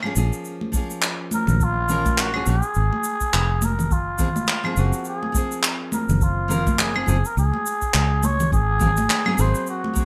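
Smooth and relaxed, this sunset chillout excerpt sways at 104 BPM in 4/4 with a swung sixteenth-note feel, moving from Bbm7 through Gbmaj9#11 to Ab9. A fingerpicked, full-bodied nylon-string guitar and a round, up-front fingered electric bass carry the harmony beneath natural small-room claves, shaker and handclaps, bright hard-handed congas and a deep, overdriven analog electronic kick drum. From 1.3 seconds a veiled, breathy trumpet with cup mute takes a jazz-style solo lead with light vibrato, a growling edge and tape echo, set in a moderate studio reverb and a rough home-demo mix.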